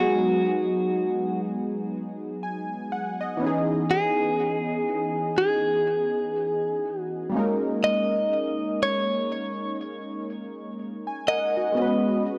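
A clean, picked electric guitar recorded direct carries the melody through tape echo over round, detuned sawtooth analog keys with chorus and a filter sweep, the keys adding a fill from 1.9 to 3.9 seconds, in this moody, sensual slow R&B excerpt at 61 BPM in G# minor with a swung 16th-note feel, moving from G#m7 through C#m9 and D#7sus4 back to G#m7 in a dry, gritty recording with light reverb.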